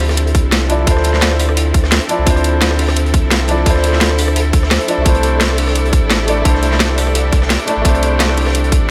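Liquid drum and bass with a rolling, soulful mood, this short cut from a longer piece pairs a warm grand piano accompaniment carrying delay with clear, bowed studio strings whose sustained vibrato chords pump against the sidechain, while a woody kalimba rings out delayed thumb-plucked arpeggios in the background, all moving from Dm9 to C69 at 5.1 seconds. Beneath them a deep, round sine sub bass sits up front. The drums layer an overdriven electronic kit with cracking snare, bright hats and rim clicks, a tight overdriven electronic kick entering at 0.3 seconds, and a gritty, dark, saturated breakbeat kit tucked behind with its top rolled off, all three carrying studio reverb inside a small room ambience.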